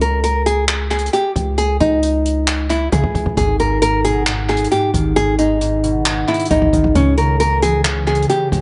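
A fingerpicked nylon-string guitar leads this menacing, melancholic hip hop and trap excerpt at 134 BPM in a half-time feel, carried by a punchy, heavy 808-style bass and a brushed jazz kit with a boomy kick, handclaps and hi-hat, while a ringing concert harp joins at 3.4 seconds, with analog delay on guitar, harp and drums in an echo-heavy small-room mix that moves from C#5 through G#m to C#m.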